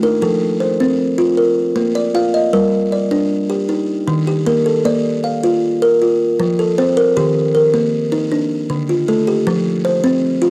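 This short cut from a longer piece of southern African traditional music has a hypnotic, rippling mood, moving at 104 beats per minute in a straight 12/8 lilt and centred on F mixolydian, tuned slightly above standard pitch at A4 = 441 Hz. A lone buzzing kalimba plays throughout, from 0.0 to 10.5 seconds, ranging from D3 up to F5. Its thumbnail-plucked tones are warm, woody and bright, with a buzzing, ringing quality, and the instrument has a solid board. It sits up front in the sound with a cassette tape colour. The harmony cycles through F, Bb, Gm, Eb, Bb, F, Eb and Dm before returning to F as a brief new passage begins at 9.5 seconds. A light reverb and the character of a home cassette recording frame the instrument.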